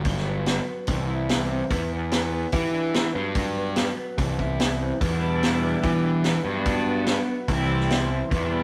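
A restless, cool indie rock passage in E minor at 146 BPM opens on a twangy, slightly broken-up guitar riff tucked behind a growly, overdriven fuzz bass and a punchy vintage drum kit with a high-tuned snare and rolled-off top, before a clean, compressed twelve-string electric guitar riff arrives up front at 5.0 seconds over a very quiet, detuned analog pad of slow-attack sustained chords, all in a rough rehearsal-room sound with light reverb and saturation.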